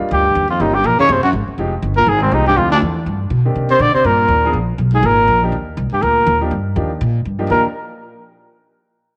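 A veiled, bucket-muted trumpet carries the melody up front with vibrato and punchy force in this playful, swinging excerpt of small-group swing and bop at a brisk 243 BPM in Eb major. Beneath it, a breathy baritone saxophone adds a mellow subtone second line, a woody upright bass thumps out the bass line in pizzicato, and a clear concert grand piano supplies quieter accompaniment through changes that travel from Ebmaj7 to Fm7 and Cm7 before settling back on Ebmaj7 at 5.5 seconds. An echo chamber reverb gives the short passage a roomy sheen.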